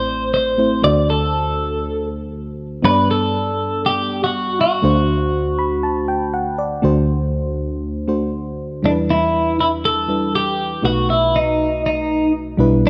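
Nostalgic and dramatic, this excerpt from a longer pop piece moves at 120 BPM in a straight 4/4, with a bright, twangy twelve-string electric guitar carrying the melody up front over a mellow, warbling FM electric piano that spans from deep bass to high register. The piano adds a fill from 5.3 to 6.8 seconds, and the harmony travels from Am through D7 and G before turning to Em7 and B7 in the closing stretch. A lush hall reverb with a 2.4-second tail surrounds both parts, lending the vintage keys and the clean, compressed guitar a spacious sheen.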